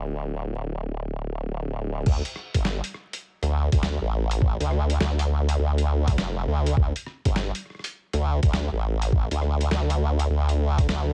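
Glitch hop excerpt in D minor at 102 BPM with a funky, gritty mood and a swung 16th-note feel, opening on a wobbling, detuned sawtooth-and-sine formant-sweep bass, up front with chorus and tube saturation, over a bed of vinyl crackle, before the drop at 2.1 seconds brings in a thumpy, pitched-down electronic kick and a compressed, tape-warm boom bap sampler kit of crash, hi-hat, rim click and medium-tuned snare in small room ambience.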